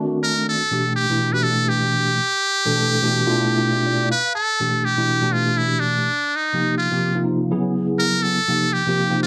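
A clean tine electric piano opens this short jazz excerpt, sounding through its built-in speakers with an ensemble chorus and laying down chords from a D7b9 into G13. A muted trumpet enters at 0.2 seconds to carry the melody, its metal mute giving a buzzy, thin tone with light vibrato and a punchy, forceful jazz-style attack capped by a smooth top. The tune swings in 4/4 at 124 BPM in G mixolydian, tuned slightly low to A4 = 437 Hz, and the mood is bright and soaring. Two matching sections split the passage, and the piano plays a fill from 3.6 to 4.6 seconds before the harmony moves through G69, F5, E69 and Ebadd9. Both parts sit up front in a dry, close recording with the feel of a 1970s studio and little reverb.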